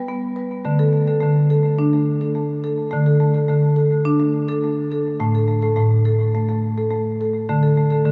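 World meditative music built on tuned percussion, this short, hypnotic excerpt drifts along in a gentle, straight 4/4 pulse. A lone marimba played with medium mallets carries the whole passage from 0.0 to 8.1 seconds, ranging from A2 up to B4. Its rosewood bars sound woody and warm, sitting up front, while a tape echo trails behind its notes. The harmony rests on G before moving to D5 at 0.6 seconds, then falls away from chords at 5.2 seconds before returning to D5 at 7.5 seconds. A cathedral reverb with a long 5.7-second tail places the marimba in a vast, echoing space, and the recording carries a cassette-tape character.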